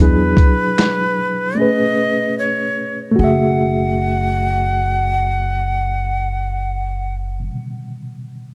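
A hazy, melancholic lo-fi hip hop excerpt at 75 BPM in F# minor opens with a breathy, bright jazz flute carrying the melody with vibrato and a crisp chiff. Beneath it from the very first moment, a reedy, worn electric piano, slightly out of tune, shimmers with fast tremolo and cassette tape colour, and a woody pizzicato upright bass holds the low end. A gritty, compressed sampler-style kit with a thumpy kick, snare, hi-hat and finger snaps sits up front only from 0.4 to 1.0 s, and the electric piano is the last part heard, sounding until 8.5 s, all within light reverb and a dark, warm production over E9, Amaj9 and F#m9 chords.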